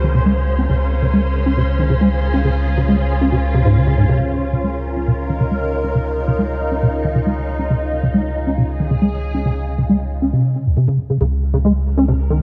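In a straight 4/4 pulse, this glitchy, intricate IDM fragment pairs rubbery, resonant acid-bass arpeggios run through chorus, cassette tape and tape echo with a round, dark analog bass that sits up front. A silky, vintage string machine holds phased, chorused chords over a lush major-thirteenth harmony, while a flickering, granular texture glints above only until 4.2 seconds. A filter sweep then moves across the acid bass until 11.2 seconds, when the harmony thins to a bare fifth, and the whole piece sits in a moderate echo-chamber ambience.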